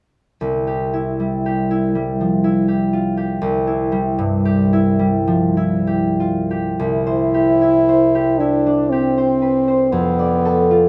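In a slow, rubato 3/4 at 46 to 62 BPM, this lyrical, warm romantic classical duo in C major opens at 0.4 s with a bright, ringing concert harp, fingerpicked and up front. A clear French horn enters at 6.8 s with a classical-style solo melody, also placed up front, as the harmony moves from C toward Dm/F at 9.9 s. Close, detailed microphones and light reverb frame this short passage taken from a longer piece.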